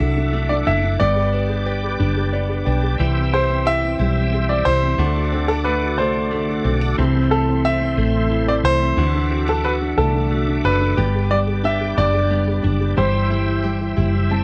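A clear, polished baby grand piano carries the melody up front in this heartfelt, romantic six-eight pop ballad in G major at 60 BPM, with a round, woody fretless electric bass, touched with subtle chorus, sitting just as close beneath it. A soft, felt-muted upright piano with audible action noise supplies intimate accompaniment and adds brief fills at 2.0 and 14.0 seconds, while a reedy tonewheel organ holds sustained chords through chorus vibrato and a slow rotary speaker, and a direct-recorded, compressed clean electric guitar picks arpeggios in the background. The sound is dry, with little reverb, and this excerpt is cut from a longer piece.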